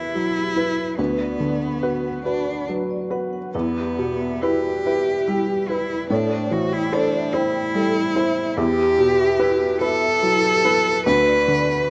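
A felt-muted upright piano and a rich, bowed cello open this fragile, longing neoclassical fragment together, moving in an unhurried, rubato 6/8 lilt. The piano sits up front as accompaniment, its soft, intimate tone carrying short sustain and audible action noise, while the single cello plays a second line close by with focused vibrato. Beneath them, a very quiet pedal harmonium holds reedy, breathing chords in a boxy small-room sound. A vibraphone with medium mallets rings metallic arpeggios in the background, its fast motor vibrato trailing through tape echo until 11.8 seconds. The harmony drifts from Emadd9 through Bm/D, Em and Am7 before circling back, all caught in a rough home-demo mix with light room reverb that ends at 11.9 seconds, cut from a longer piece.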